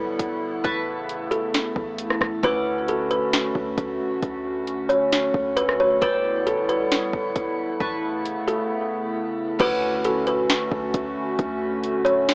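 A woody, ringing kalimba carries the melody through tape echo in this dreamy, floating stretch of atmospheric cloud-rap, set to a half-time hip hop groove. A detuned, nostalgic tape-like pad holds sustained chords with chorus, a bright qanun played with fingerpicks adds texture, and a deep, boomy 808-style bass sits in the background; from 0.2 s an overdriven R&B drum kit with soft kick, sharp snare and hats sits up front. The mix carries a worn cassette character with warbly pitch drift, an AM radio tint and a moderate shimmer reverb.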